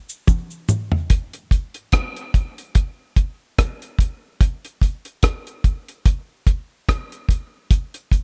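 Heavy and deep, this short reggae cut at 73 BPM in 4/4 with swung sixteenths opens with a close cabasa heard briefly from 0.1 to 0.9 seconds as a deep acoustic drum kit enters with a fill at 0.3 seconds, then settles into a groove of hi-hat, tight kick, rim click and toms that sits up front, dark and dry with a rolled-off top, in a room with little reverb.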